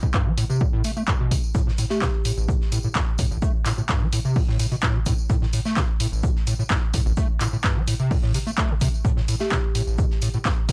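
A squelchy, gritty overdriven acid bass anchors this trippy, driving acid house excerpt, its resonant square-wave riff sitting up front in A minor with distortion, ensemble chorus and sidechain pumping. A punchy electronic kick drives the straight 4/4 pulse at 128 BPM, joined by an analog drum machine with handclaps and hi-hat; both carry a tape-warm character, as if re-recorded in a small room. A bright, jingly tambourine rides close and dry in the background. At 1.5 s a very quiet acoustic indie drum kit slips in with hi-hat, shaker and a fat snare in a pumping studio room. A woody, rustic marimba played with soft mallets adds brief mellow, round notes around 1.9 s and again at 9.4 s, lightly echoed by analog delay. The whole mix sits in a light reverb.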